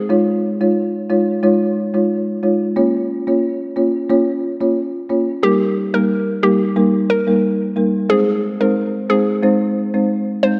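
Hypnotic and sultry, this dancehall excerpt moves at 90 BPM in a straight 4/4, cut from a longer piece. A folk marimba played with medium mallets carries the accompaniment from the start, its hardwood bars sounding woody, dry and rustic, with a boxy small-room character placed up front. At 5.4 seconds a hollow square pluck enters with the melody, bouncy and mellow with a fast attack and a decaying tail, a noise layer and filter pluck shaping its tone, while chorus and analog delay thicken it. The harmony moves from Dbadd9 to Bbm, then to Eb as the second section begins, and on to Ab. A lush hall reverb of 2.0 seconds soaks the mix, giving the whole recording a dreamy haze.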